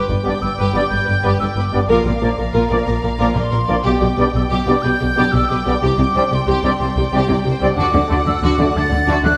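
Heroic and triumphant, this cinematic orchestral excerpt in 12/8 sets a lush, vibrato-rich violin melody against airy, crisp-edged flutes on a second line, with smooth second violins and smooth violas in the background, dark, woody cellos and rich, up-front double basses carrying the bass, warm trombone and very quiet, distant French horn chords, and punchy trumpet stabs, the whole ensemble heard in a moderate scoring-stage reverb as the harmony moves from G through Bb and Csus2 to D.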